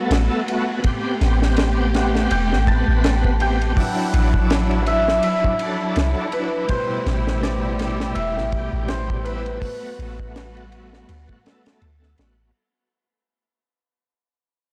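A round, up-front 808-style bass with tube saturation anchors this brooding, melancholic trip hop fragment, cut from a longer piece, where a dry reggae kit with a high-tuned, softly clipped snare swings under a shouting, lightly overdriven tonewheel organ with slow rotary, key click, tremolo, sampler grit and tape echo, lush bowed symphonic strings sustain dark chords, and a shimmering hammered cimbalom carries the melody from 2.0 s through sampler grit and tape echo, all in a blown-out, overdriven mix that fades out from 4.7 s.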